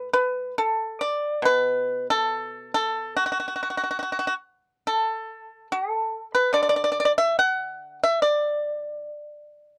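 A solo pipa, bright and percussive under fingerpicks, sits close and up front in a dry 1970s-style studio sound with light reverb, playing a flowing, serene rubato passage of Chinese traditional music that spans from A2 to F#5 across this brief 9.8-second fragment of a longer piece.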